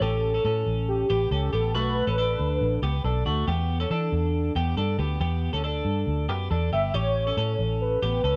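A straight 4/4 pulse at 139 BPM drives this restless, wistful jangly indie pop fragment in E dorian, where a dark, round, foam-muted fingered electric bass sits up front beside a bright, twangy, compressed twelve-string electric guitar picking arpeggios throughout, while a velvety, detuned sawtooth synth lead with vibrato, chorus and slapback echo carries the melody until 3.0 seconds and returns at 6.7 seconds, all over A7, Bm7 and Em7 chords in a light reverb.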